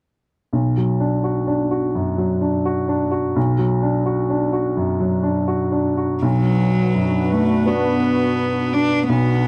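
Longing and fragile, this brief neoclassical fragment for piano and strings moves in a loose, rubato 4/4 and is cut from a longer piece. A clear upright piano carries the accompaniment from 0.5 seconds, its woody, open tone sitting up front as it settles on B minor. At 6.2 seconds a single cello joins as a second line, played sul tasto with light vibrato, a soft attack and an airy, intimate bow close to the listener. Just after, at 6.3 seconds, a hollow, flute-like pad with a faintly nasal edge slips in above, holding sustained chords at a lower level with a touch of chorus. Light reverb and a dark production give the short passage a hushed, inward glow.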